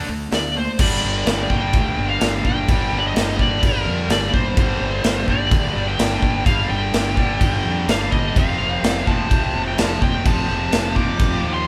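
Hard rock with a heavy, driving mood, this short excerpt cut from a longer piece moves in a straight 4/4 feel. Two bright, distorted rhythm guitars sit in the background playing riffs from the start, one high-gain and the other tight, while a fuzzy, growly fingered electric bass pushes underneath with a punchy overdriven tone. At 0.3 seconds a smooth overdriven lead guitar enters with a bright, picked melody that sits high above the band, and an acoustic rock drum kit comes in up front with a punchy kick, medium-tuned snare, hi-hat and crash cymbals. The harmony moves from D5 to G5 and later settles on F at 8.4 seconds. The band sounds as if it is playing live together in one room, lightly touched with reverb.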